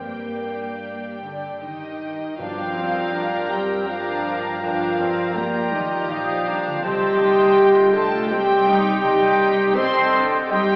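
In a rubato 3/4 at 81 BPM in G minor, this longing, bittersweet cinematic cue opens with mellow harp arpeggios, a sul tasto viola section, an intimate cello section, a woody background double bass section and two violin sections, one carrying a floating, distant melody and the other a darker second line, before a clear, punchy French horn section adds sustained chords at 1.2 seconds and an oboe, an airy flute group and a soft clarinet join with second lines at 2.4 seconds, where calf-headed timpani briefly sound in the background over Gm7 harmony, all heard from far back in a wet scoring-stage reverb with an AM-radio colour.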